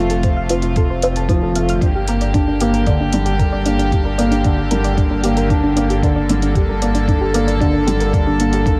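A light reverb and a digital ambience surround this short excerpt of piano and strings electronica, which feels luminous and tender at 114 BPM in a straight 4/4. A felt-muted upright piano plays a mellow, intimate riff, its thick felt and audible action noise giving it a dark, soft character, shaded by a low-pass filter and digital delay. Around it, a rich chamber string section holds soft-attack, sul tasto chords that float with sidechain pumping. A round pluck traces high arpeggios with a gentle, detuned glow, colored by chorus, digital delay and the same pumping. Underneath, a deep sine sub bass adds tube saturation and pumps too, while a muffled, thumpy electronic kick drum enters at 0.2 seconds just after an overdriven, layered electronic hi-hat at 0.1 seconds. The harmony moves from F to Gm at 1.8 seconds.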